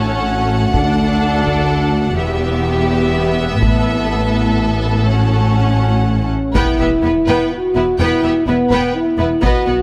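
Mellow French horns hold sustained chords at the heart of this relentless, dramatic epic orchestral film cue in 3/4, with a clear, intense violin section singing the lush vibrato melody over a smooth-topped chamber violin second line, focused violas, rich cellos set in the background and distant, even double basses, while close, dry taiko drums struck with heavy sticks drive in from 0.7 seconds and a huge, bright but very quiet impact lands at 6.5 seconds, all set in a moderate scoring-stage reverb.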